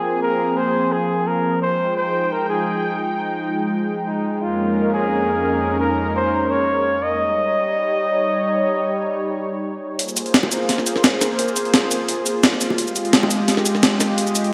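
A breathy, mellow flugelhorn leads this uplifting liquid drum and bass piece, playing a jazz-style solo melody with light vibrato that trails into a diffuse ambient delay until 9.6 seconds. Beneath it, a thick, airy sawtooth pad of detuned unison voices holds sustained chords from the start, its slow attack and noise layer shaded by chorus and phaser. At 10.0 seconds a build-up begins as a gritty, compressed breakbeat kit arrives up front, with a medium-tuned snare, hi-hat and cabasa all softened by low-pass filtering and a tape-tinged character. Very quiet, round, low-tuned acoustic bongos add brief touches in a small room. The whole mix is soaked in a lush hall reverb, giving this cut from a longer piece a dreamy sound.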